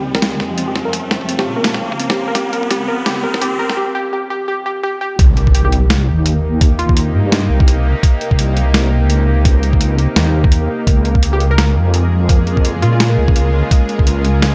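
A deep, dark wobble bass sits up front throughout this tense, cinematic half-time drum and bass excerpt at 169 BPM in C phrygian, joined by a string-like bowed drone with vibrato, a mellow pulsing gated texture in the background and a glassy, crystalline wavetable pluck carrying the melody under a filter sweep, while a woody, buzzing kalimba plays arpeggios until 3.8 seconds. A gritty sampler-style kit with a high-tuned snare drives a swung feel from the start, a thumpy, pitched-down kick briefly appears early on, and an electronic riser builds over the opening before a brief break. The drop lands at 5.2 seconds with an impact as the kick returns. Light digital ambience frames the mix, and the harmony moves from Db to Cm7 and back to Db.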